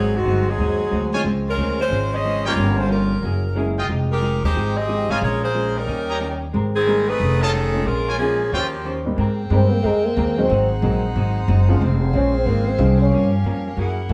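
Light reverb and a small-room ambience frame this energetic, brassy big band swing excerpt in Ab major, driving along at 182 BPM with a swung feel. An up-front, woody pizzicato upright bass, a clean, picked hollow-body electric guitar and a smooth vintage grand piano in the background carry the accompaniment, while a bright saxophone section with vibrato states the melody and a brilliant trumpet section punches out stabs until 8.7 seconds. At 9.2 seconds a second saxophone section holds mellow sustained chords, and from 9.5 seconds a veiled, breathy cup-muted trombone takes a soft solo.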